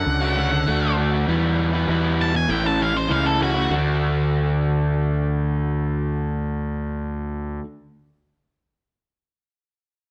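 This upbeat, carefree rock excerpt opens with a dark, octave-fuzz lead guitar soloing over a crunchy, double-tracked overdriven rhythm guitar riff and a growly, bright fuzz bass, all up front at a straight 99 BPM in D major. The solo runs until 3.7 s, moving over Dmaj7, Em and A before the change to D, after which the riff guitar and bass carry on to 7.6 s. The band plays live together in a stone room with a moderate reverb.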